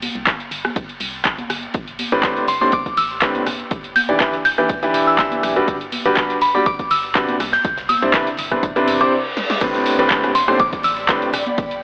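A punchy analog drum machine drives this energetic, soulful piano house at 122 BPM in 4/4, with a light swing on the sixteenths. Its handclaps, hi-hat, rim click, snare and crash sit up front with a short room and tape warmth, alongside an analog electronic kick. Behind it, a very quiet, huge arena kit adds ride and a fat snare in a pumping hall. Bright, compressed tambourine and congas and a hollow, organ-like FM bass with tube saturation and sidechain pumping sit in the background. From 2.1 seconds a brilliant concert grand piano plays the riff up front, intimate and polished with audible action noise and deep lows, moving through Am11, Em7, Gmaj7 and Cmaj9 in A dorian, while a glassy, crystalline synth bell carries a high, warbling melody with chorus, tremolo and analog delay. A stop at 9.1 seconds brings a faint reverse cymbal and downlifter and a drum fill before the drop at 9.6 seconds, where an ethereal, airy detuned pad with ensemble chorus, phaser and reverb breathes in at the very end, all set in light studio reverb with a lo-fi AM radio colour.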